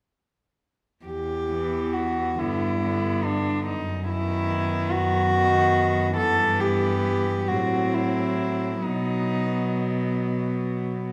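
A clear, nasal cello carries the yearning melody up front, bowed sul tasto with a soft attack, in this melancholic classical fragment for cello ensemble in a rubato 6/8. Beneath it, a distant cello holds the bass line, another with a smooth top plays a second line, and a close, intimate cello adds accompaniment with light vibrato and an airy bow, all four entering between 1.1 and 1.5 seconds. The harmony moves from Em through G and B/F# to arrive on B, bathed in the wet reverb of a recital hall.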